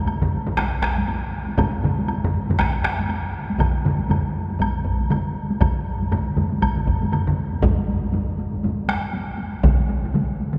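This powerful, ceremonial taiko drum ensemble piece, cut from a longer work, opens at once on layered taiko struck with hard and heavy sticks, alongside a woody, close woodblock that drops away at 7.3 seconds. At 119 BPM in 4/4 with a swung sixteenth-note feel, the drums move from the opening section into a second one at 7.6 seconds, one taiko part sitting dry and up front while another rings in a live room. A cavernous cathedral reverb, like a church or concert hall, surrounds the ensemble through to its end at 10.6 seconds.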